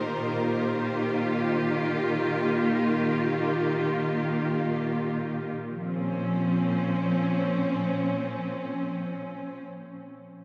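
Bathed in a vast cathedral reverb, this serene, spacious ambient fragment from a longer piece features a clear, lush symphonic string section sustaining bowed chords with vibrato from 0.0 to 9.7 seconds, moving from Eb/Bb to Bbm at 5.6 seconds.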